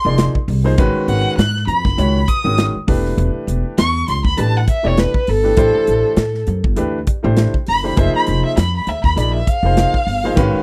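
The sound is dry and close, in the manner of a 1970s studio recording, with little reverb around the players. This brief excerpt of nocturnal, funky electric jazz fusion rides a lightly swung sixteenth-note feel in 4/4. A bowed violin carries a solo from the opening second, its expressive line shaped by vibrato and portamento and trailed by a slapback echo. Underneath, a pizzicato upright bass with a woody, steel-strung tone sits up front, while a grand piano offers intimate accompaniment with audible action noise, deep low end and long sustain. An acoustic drum kit, entering at 0.2 seconds, adds a punchy kick, a medium-tuned snare and hi-hat. The harmony moves through Fm7, G#m11, Em7 and Am11 before landing on Fm11 near 8.0 seconds.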